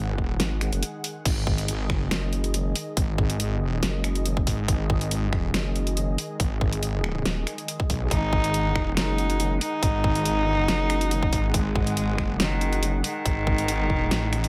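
Dry and close, with only a small room around the drums, this excerpt from a longer heavy wobble dubstep piece hits hard and aggressive at 140 BPM in a half-time 4/4 feel, with a G#5 chord at the very start. Two wobble basses sit up front: one detuned, saturated sawtooth-and-sine bass with chorus and overdrive that stays surprisingly mellow, and a second, darker vowel-sweep bass whose resonant formant filter gives it a nasal, talking quality, entering at 0.4 seconds. A punchy electronic kick and a dubstep kit with a huge snare, bright hats, crash cymbal and finger snaps bring a tape-warmed, layered punch, with a short break in the drop between 0.8 and 1.3 seconds. Behind them, a lush, airy supersaw pad holds sustained chords through a low-pass filter and sidechain pumping. At 8.1 seconds a single bowed cello arrives up front, smooth and boxy with vibrato, its line trailing dub echo over the churning low end.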